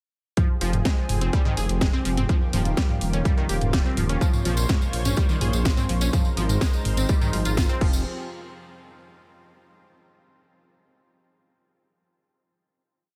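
This melodic techno piece in F minor opens at 0.4 s straight into a drop at 125 BPM: a punchy, overdriven electronic kick drives a four-on-the-floor pulse up front, joined by a programmed house kit with a cracking snare on the backbeat, closed and half-open hi-hats, low toms and crash, all re-recorded in a large room. Over it, a lush, thick and airy detuned sawtooth pad holds sustained chords with chorus and sidechain pumping. A bright, detuned unison pluck repeats a 16-step arpeggio sequence through a filter sweep, phaser and tape echo. From 0.6 s a menacing, evolving detuned saw bass plays off-beat notes with a saturated filter swell, pumping under the kick, while a very quiet, nasal analog drone with pulse-width modulation and chorus slowly fades in low beneath. Jingly, close acoustic tambourine sixteenths arrive at 4.2 s as the chords cycle through Fm, Eb, Bbm and Ab. The cinematic, hypnotic mood sits in a digital ambience before the drop gives way to a final hit at 8.1 s.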